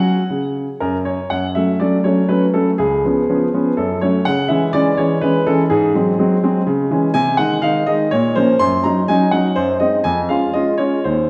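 Classical-period piano sonatina in 3/4 at 123 BPM, graceful and elegant with a rubato feel, this brief excerpt features a clear, open baby grand piano with long sustain playing solo from C#2 to C6, beginning on a lone F#5 before moving through F# minor harmonies and turning to Db major at 7.1 s, all set in a wet recital hall reverb heard from further back in the room, and cut from a longer piece.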